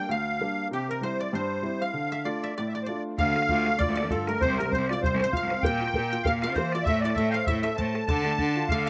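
A reedy, shimmering musette accordion carries the melody of this driving, spirited Celtic reel fragment in swung 4/4, joined from the first moment by a dry, fingerpicked koto on a woody second line and an upright piano's natural accompaniment, all three touched with slapback echo, before a bright, biting bowed cello bass and a boomy, open bodhran enter at 3.2 seconds, the outdoor recording carrying little reverb.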